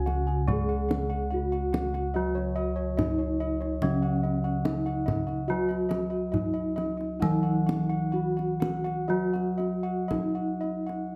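A pair of bronze metallophones carry this serene, ceremonial Javanese gamelan excerpt in a straight four-beat metre: one has a melody line, the other an accompaniment an octave lower. One is struck with padded disc mallets for a mellow, soft tone with shimmering beats from its paired tuning, and the other is played with a horn mallet and sounds bright, dry and full. Two sets of round, beating bossed gongs add high arpeggios and a low bass line, one set dark and smooth and the other bright, while a deep kendang played with soft hands sits in a live room under light reverb and close, detailed microphones.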